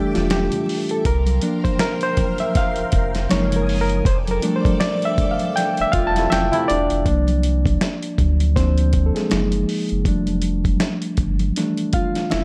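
Swung 16ths at 80 BPM in 4/4 set up this sensual, soulful neo-soul and R&B excerpt in F major, grounded by a gritty, compressed sampler-style drum kit with a thumpy kick, very quiet bright congas and a round, deep analog bass sitting up front. A barky, lightly overdriven reed electric piano carries the solo through both sections, while a lush vintage string machine holds sustained chords until 7.0 seconds and a clear trombone section adds a short stab at 6.1 seconds. Fmaj13, C7sus4 and Gbmaj13 cycle beneath a dark production with light reverb.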